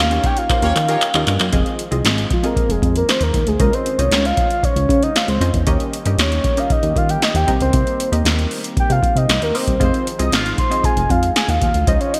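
A bright, 1980s-style digital production set in a lush hall reverb carries this late-night, funky slice of early-eighties boogie funk, cut from a longer piece and moving at a straight 116 BPM in F minor. Up front, an electro analog drum machine drives it with a deep kick, punchy gated snare, metallic hi-hats and handclaps, rolling into a drum fill at 0.5 seconds. A glossy, nasal chorused synth bass anchors the low end, while a funky polysynth comp plucks sawtooth chords and a very quiet, brassy analog pad sustains beneath with a soft attack and a moving notch. From 1.5 seconds a soft, round, octave-layered synth lead takes a solo with vibrato and chorus over chords moving through Fm7, Dbmaj9, Eb7 and Cm7. A distant horn section with light vibrato and digital delay sits in the background, appearing briefly at the start and again near 9.8 seconds.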